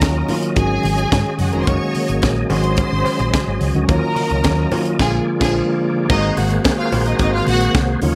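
Danceable and driving, this short disco passage cut from a longer piece moves at 108 BPM in a straight 4/4, tuned slightly flat of standard pitch. A tight funk drum kit sits up front with a high-tuned snare, tight kick, hi-hat and crash, while a dark, round fingered electric bass anchors the low end. A worn, slightly out-of-tune tine electric piano supplies mellow accompaniment, and a gritty, overdriven tonewheel organ holds thick sustained chords through chorus vibrato and a fast rotary speaker. Above them, a lush, distant symphonic string section carries a second line with bowed vibrato, and very quiet congas are joined at 1.7 seconds by a metallic cowbell. The harmony circles through Ebm9, Ab7sus4 and Gb69 before a band accent from 5.0 to 6.1 seconds over Bb7, after which the passage shifts to a new section on Ab9, all set in a light reverb.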